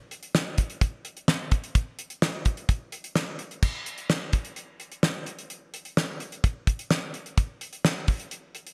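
Cool and nocturnal, this short pop passage cut from a longer piece moves at 128 BPM in a straight 4/4, carried from 0.1 s by an up-front, damped 70s drum kit with a fat snare, tight kick, hi-hat and dark crash cymbal under gated reverb, shifting into a new section at 3.6 s within a bright 1980s-style digital production touched with light reverb.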